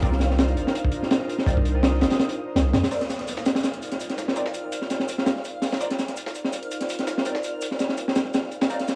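A crunchy, saturated breakbeat kit with a punchy kick and high-tuned snare opens this dark, raw drum and bass and jungle excerpt at 166 BPM in C minor, under an airy, breathy pad holding a Cm11 chord, a nasal band-passed chord stab soaked in phaser and dub echo, a reversed, dreamy texture in the background, and a deep, sine-based 808-style bass that sounds until 2.8 s. At 2.9 s a compressed, dusty soul sampler-style kit with hi-hat, shaker and snare joins, along with an electronic downlifter that runs until 5.8 s. The sound is dry and gritty, with vinyl crackle, small room ambience and a light reverb.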